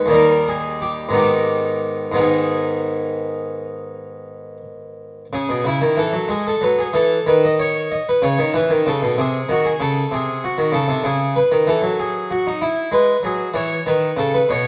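A close, dry-miked harpsichord sits up front in a moderate recital hall reverb, its plucked French-style tone full and rich from two sets of strings. This short excerpt from a longer baroque-style suite movement unfolds as a flowing, solemn solo in 12/8 with free rubato, ranging from the low bass to the upper treble. The harmony moves from G# minor to C# minor at 5.3 s, passing through a diminished seventh before settling toward an E chord near the close.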